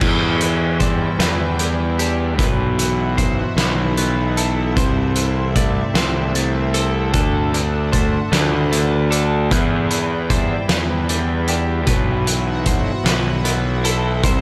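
A cathartic, cinematic post-rock passage in a slow, heavy 6/8, cut from a longer piece, where an oversized, low-tuned drum kit sits up front with a muffled, saturated sound, dark cymbals, a fat snare and a punchy kick, beside a growly fuzz-picked electric bass. Two clean, compressed twelve-string electric guitars play arpeggios through digital delay in the background, one low and warm, the other higher and twangy, while an evolving, warbling wavetable pad with chorus enters at 0.4 seconds to hold sustained, detuned chords. The mix is dry, moving through Em7, Bsus4, Am/C and D before circling back.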